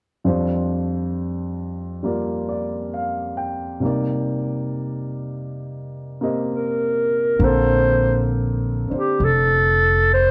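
The recording has the worn, warbling character of old cassette tape, with a drifting pitch and a light reverb around it. It is an intimate, tender jazz ballad with a swung eighth-note feel, cut from a longer piece. A concert grand piano accompanies from the opening at 0.2 seconds, open in tone with a deep bass register, moving from a Bb6/F chord to Cm7 and later to Bbmaj9. A growling clarinet takes the solo melody from 6.5 seconds, mellow yet raspy and gritty. It is played in a jazz style with subtone, scooped notes and light vibrato, and it sits distant and roomy in a plate reverb. A woody, pizzicato upright bass with steel strings joins at 7.4 seconds, up front in the mix.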